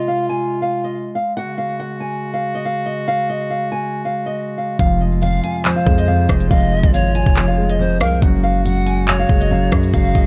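Drill hip hop at 140 BPM in a half-time feel, this ominous, cold excerpt sits in F phrygian and moves between F minor and G-flat suspended chords. It opens with a thumb-plucked nylon-string guitar carrying a small, fresh-stringed melody through a digital delay, set over sustained chords from a mellow woodwind section with a smooth top. At 4.8 seconds the drill kit arrives up front with a knocking kick, crisp hi-hats, handclaps and rim clicks, joined by a punchy, heavy 808-style bass with a fast attack and decaying tail, and a dark, vintage grand piano whose accompaniment carries audible action noise. From 5.2 seconds an airy, bright pan flute with vibrato and a soft attack adds an expressive second line, also through digital delay. A drum fill closes the passage near 9.9 seconds, all within a dry, dark and warm production.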